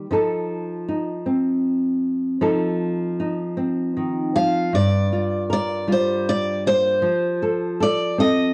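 A fingerpicked nylon-string guitar opens this tender, intimate folk-pop ballad, its classical tone carrying audible finger squeak as it sets out the accompaniment over an F7 chord. The pace is an unhurried 78 BPM in a straight 3/4. At 4.4 seconds a bright, picked steel-string acoustic guitar enters with the melody, sitting in a high, narrow register above the nylon guitar's deeper range. The harmony moves to Gm7 as a new section begins and settles on F6 toward the close, with both guitars playing together until the fragment ends at 8.5 seconds. Both instruments are placed up front and carry a cassette tape coloring, and the home recording has light reverb and the ambience of a small room, lending the performance a close, private feel as a short passage cut from a longer piece.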